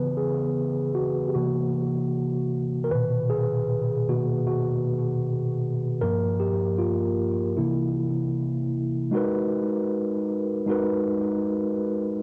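A mellow tine electric piano opens this short, reflective hip hop cut from a longer piece, playing alone from the start at 77 BPM in 4/4 with a 60% swing on the sixteenths. The piano sits clean and up front, ranging from G2 to B4. It passes through cassette tape coloring, a low-pass filter and analog delay, which give it a nostalgic, mellow warmth. The chords move through C#m7, C7, Bmaj7, Gm7 and back to C7 before a new section begins at 9.1 seconds on G#m9, carrying on until 12.2 seconds. Light reverb and digital ambience frame the home cassette recording, tuned slightly sharp to A4 = 441 Hz.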